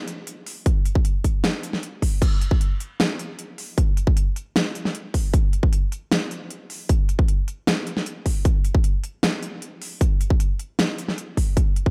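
Up-front, tape-warm drums sit in light reverb in this bittersweet, emotional future bass clip cut from a longer piece, moving at 154 BPM in 4/4 with a half-time feel. A big-room dance drum kit enters at 0.1 seconds with a huge snare, crisp hi-hats and crash cymbal, and a punchy, layered electronic kick joins at 0.7 seconds. The two produced, electronic drum parts carry the whole passage.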